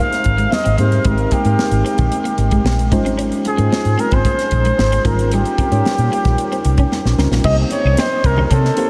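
Upbeat and urban, this polished 1980s jazz-funk pop excerpt moves at 113 BPM in Ab major, with a breathy, whispered flugelhorn carrying the melody up front through a delay while a worn, slightly out-of-tune tine electric piano with analog chorus supplies the accompaniment. Underneath, a round, foam-muted vintage electric bass and a tight funk drum kit with a high-tuned snare and punchy kick drive the groove, joined by a twangy, slightly broken-up electric guitar riff sitting in the background and very quiet, ringing congas. A drum fill at 6.9 seconds leads into a new section at 7.4 seconds on Cm7, all within a dreamy mix soaked in huge ambient reverb.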